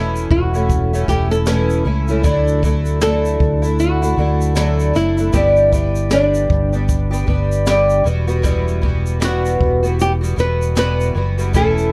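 A fingerpicked twelve-string acoustic guitar, shimmering and boxy with octave-doubled strings and a subtle chorus, opens this heartfelt, easy-going acoustic pop excerpt alongside a dark flamenco guitar carrying the melody and a round, up-front fingered electric bass. At 0.2 s a jazz brush drum kit joins with a boomy kick, a high-tuned snare and shaker, setting a relaxed 77 BPM pulse in 4/4 with a gentle sixteenth-note swing. Light reverb surrounds the chord progression as it moves from Aadd9/E through Dadd9 and G to Emadd9.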